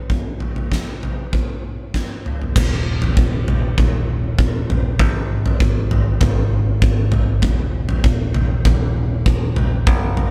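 Cinematic and cathartic, this post-rock passage, cut from a longer piece, moves at 98 BPM in a straight 4/4 in Eb minor. A huge arena drum kit opens at 0.1 seconds, set up front with a fat snare, punchy kick, gleaming crash cymbal and toms. A drum fill at 1.9 seconds leads into a modern picked electric bass at 2.6 seconds, bright and direct as it holds the low end between Eb1 and Ab1. The band plays live in one room under light reverb, and the acoustic kit carries a hall-like sound.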